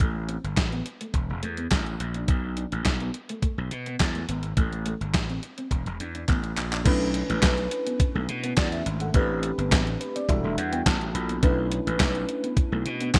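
Early-eighties boogie funk at 105 BPM in B minor, danceable with a late-night feel, built on a crisp 8-bit drum machine with a thumpy kick, handclaps and gated reverb, a growly overdriven slap bass up front, and a mellow, subtly chorused electric guitar riff tucked in the background. After a drum fill at 6.3 seconds, a lush, dreamy FM electric piano with a soft pad layer enters at 6.8 seconds, its warbling chorus and phaser colouring the shift to Bm11 and Em11 harmonies, and it takes a fill of its own around 9.7 seconds. The bright digital production and light ambience give this cut from a longer piece a polished, vintage sheen.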